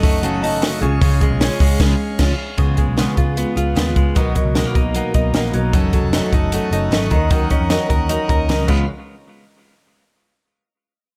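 A dry, close recording with little reverb frames this breezy, nostalgic stretch of jangly indie pop, cut from a longer piece and moving at 152 BPM in a straight 4/4 in Db mixolydian. A compact cocktail drum kit sits up front with a punchy kick, high-tuned snare, dark cymbals and hi-hat, while a vintage muted electric bass gives a round, foam-muted, amped low end. A fingerpicked twelve-string acoustic guitar shimmers with octave-doubled brightness, fresh strings and audible finger squeak, alongside a clean, compressed electric guitar recorded direct and picking arpeggios. A chamber organ voiced as a principal chorus holds full sustained chords with a touch of chiff, dropping out at 2.6 seconds and returning at 5.7 seconds. A band accent lands just before the harmony shifts from Gbm6 and Db into a passage moving through Db7, Cbmaj7, Gbm6 and Ebm7, before the instruments fall away at 8.9 seconds.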